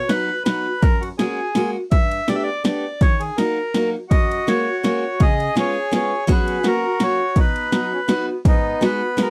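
A bright, reedy bandoneon carries the melody up front in this bittersweet, whirling musette waltz, backed by a boxy parlour-style steel-string guitar, picked with audible finger squeak, and a punchy, layered electronic techno kit of kick, snare and ride. At 4.1 seconds a full, airy accordion with a dry tuning joins as a second line beneath the melody, over chords that drift through add9 and suspended colours. The dry, close sound recalls a 1970s studio, and the clip is cut from a longer piece.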